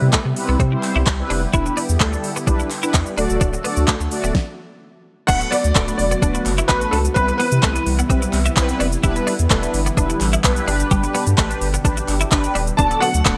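Opening on mellow, brassy synth chords pumping over a soft, airy supersaw and a thick, saturated sub bass, this summery, carefree dance-pop cut at 128 BPM soon adds a twangy twelve-string electric guitar riff, an overdriven, up-front electronic drum kit with fat snare and metallic hats, and faint hollow group handclaps, all set in bright 1980s-style digital ambience, before a stop at 4.3 s gives way to a clear, intimate grand piano melody with chorus and delay entering at 5.3 s over chords moving from Cmaj7 through Em7 to D6.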